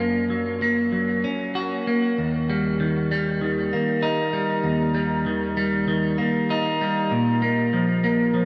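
A lone semi-hollow electric guitar opens this short rock excerpt, playing by itself from the first moment to the end at 8.4 seconds. The mood is euphoric and cinematic, moving at 97 BPM in a straight 4/4 feel in Eb major, with the tuning set slightly high at A4 = 444 Hz. The guitar is clean, picked and up front, with a warm hollow-body tone and a delay trailing its notes across a range from Eb2 to Gb4. The harmony starts on Gb, shifts to Eb at 2.2 seconds as a new section begins, and lands on a Bb5 power chord at 7.1 seconds. An enormous ambient reverb with an 8.4-second decay soaks the whole mix, giving it a dreamy quality.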